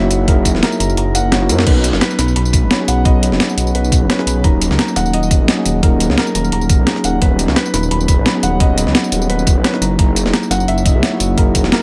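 Under a light reverb, this lush, dreamy liquid drum and bass cut in B major at 173 BPM pairs a mellow tine electric piano with tape echo and a soft, felt-muted upright piano playing delayed arpeggios, with its action noise audible, over an up-front, saturated, menacing detuned saw bass with filter swells, a gritty, compressed, tape-warm breakbeat kit of snare, hi-hat, tambourine and crash, and a knocking electronic kick that drops out from 1.0 to 1.7 seconds as a drum fill leads into the chords moving from Badd9 through D#m7 and Bmaj9/D# to F#13.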